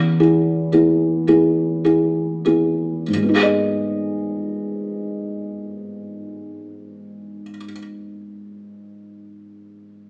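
Reflective and full of longing, this brief classical fragment, cut from a longer piece, unfolds in 6/8 with a freely breathing, rubato feel. A felt-muted upright piano carries the accompaniment throughout, sitting up front with a soft, dark and intimate tone, the thick felt rounding every note and the action noise clearly audible beneath the sound. The opening settles on an E chord and slows through its first 3.1 seconds before the harmony turns to G# minor for the next passage. The piano spans a low register up into the middle of the keyboard, and the part ends at 10.1 seconds. The piano sits in a large studio with a wet reverb, yet the recording has the narrow, boxy character of a small speaker, as if heard live in one room.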